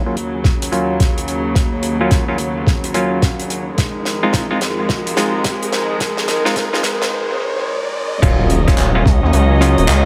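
A bowed string section with a reedy, gut-string tone holds sustained Ebm7 and Fm7 chords from the start, pumping under sidechain, while a stringy clav played through a combo amp adds percussive stabs with a filter sweep and analog delay in this gritty, funky glitch hop cut in Eb dorian at 108 BPM with a swung 16th-note feel. A dry, damped 70s drum kit with dark cymbals, handclaps and a fat snare is soon joined by a thumpy, pitched-down electronic kick, and an electronic riser sits in the background from 2.3 seconds through the build-up and a short break. At 8.2 seconds the drop lands with an impact and an aggressive, nasal sawtooth synth bass up front, in an echo-heavy mix with light small-room reverb.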